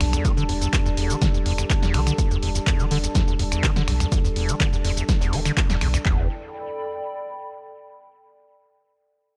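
A straight 4/4 pulse at 124 BPM drives this gritty, hypnotic acid house excerpt in E minor: an up-front, punchy analog drum machine delivers kick and handclaps, a second drum machine re-recorded in a large room adds snaps, claps, hi-hat, shaker and snare, a very quiet, muffled soul drum kit contributes hi-hat and snare, a squelchy, resonant square-wave acid bass riff with overdrive, tape echo and filter sweeps rides over a round sine sub bass with tube saturation, a moody, detuned analog pad holds a sustained Em7 under lush chorus and sidechain pumping, and a warbling, nostalgic tape-like pad carries on until 8.0 s, well past the end of the drop at 6.1 s.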